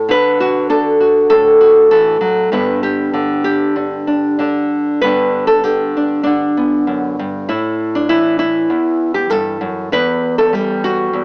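Gentle and nostalgic, this short folk fragment, cut from a longer piece in G major at a rubato 98 BPM, features a single fingerpicked nylon-string guitar played up front in a full-bodied classical style, moving through D, G, A5 and Em across 11.2 seconds and heard through a light reverb with the cassette tape and AM radio tone of a home recording.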